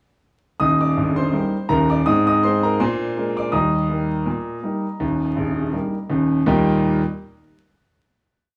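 A warm concert grand piano plays a playful, jaunty ragtime piece alone, its tune in filled octaves over a stride bass with deep low notes, audible action noise and long sustain, sitting up front with a boxy, intimate tone in a room with moderate reverb and vinyl crackle, before ending on a final chord from 6.5 seconds.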